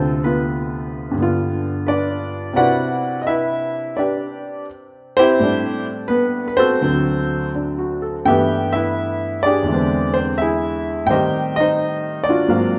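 An intimate, up-front concert grand piano, with deep bass and audible action noise, plays this moody, cool solo jazz fragment alone with a loose rubato swing, moving from Dm7 and G7 through Cmaj9 and Am11 to a closing E7alt and Am7b5 within a wet recital-hall reverb, tuned slightly below standard pitch.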